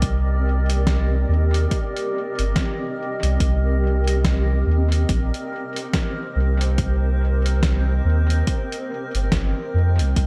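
Hazy and meditative, this ambient dub fragment settles into a single Cm7 chord with a gentle swing on the sixteenths for its full 10.3 seconds. Up front, a soft dub sub bass carries a deep, round tone with a fast attack and sustained notes. Behind it, an electronic kick drum sits in the background, layered and tape-tinged. A lo-fi sampler-style kit adds hi-hat and a medium-tuned snare that sound pitched down, compressed and muffled, as if re-recorded in a large room, with dub echo trailing the hits. Floating above, a granular cloud pad holds blurred, slowly blooming chords that evolve with a mellow, wave-folded quality, softened by its own reverb and roughened with vintage 12-bit sampler grit. A light digital ambience gives the mix a touch of space.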